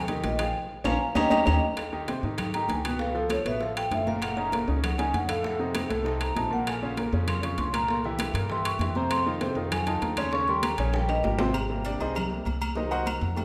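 Driven by a straight 4/4 pulse, this short, danceable excerpt of Afro-Cuban jazz feels brisk and sophisticated, with a band accent and a drum fill in its opening seconds and another fill near 10.9 seconds. A metallic, ringing vibraphone with medium mallets carries the melody as a solo from the start until 11.5 seconds, its slow motor vibrato captured close and dry for a full, present tone. Beneath it, a clear, intimate grand piano sits up front with audible action noise, comping until it takes its own brief solo at 11.5 seconds, while a dark, thumpy pizzicato upright bass supplies a woody low end. The percussion weaves a layered bed: close, dry timbales and agogo bells ring with a metal-shell edge, bright high-tuned congas struck with hard hands sit in the background, and tight bongos with cowbell and woody claves sound distant, as if from a large room. A recital hall reverb adds a lush, lingering sheen, and the harmony moves through rich jazz chords such as Abmaj7, Dbaug7, Gb6 and Bbmadd9 before closing on Cm7b5.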